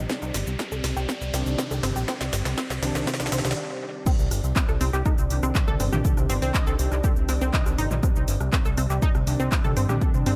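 Melancholic and dark, this melodic techno excerpt in C minor runs at 121 BPM, opening on a Cmadd9 chord as a deep, moody ambient pad with chorus and reverb sits in the background beside a fat, thick analog bass and a tight, driving sequenced synth arpeggio under a filter sweep, while an electronic riser and a drum fill build until a short break at 3.6 seconds. The heavy, up-front electronic kick, re-recorded in a large room, plays from the very start, anchoring a layered techno kit of cracking snare, handclaps, hi-hat, rim click, shaker, toms and crash cymbal, and at 4.1 seconds the drop arrives. Bold, nasal analog brass stabs with vibrato and dub echo, entering at 1.3 seconds, glow in the background of an echo-heavy mix where the pad, bass, arpeggio, brass and much of the kit pump against the kick.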